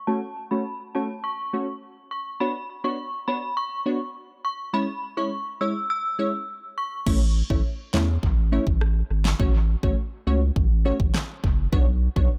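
A warbling, inharmonic FM synth chime carries the melody of this summery, bouncy dancehall excerpt, ringing high through ensemble chorus, phaser, a low-pass filter and analog delay until 6.9 seconds. Beneath it, a crisp, detuned wavetable chord stab plucks through a low-pass filter with sidechain pumping, moving through F#m/A, Bmadd9 and C#m in A major at 103 BPM while a filter sweep runs across the opening. At 7.1 seconds a deep, triangle-toned saturated sub bass and a punchy, tape-warm pop drum kit arrive together. The electronic kit layers a fat snare, kick, handclaps, rim clicks and a crash. The mix is dry but echo-heavy, with every part sitting up front.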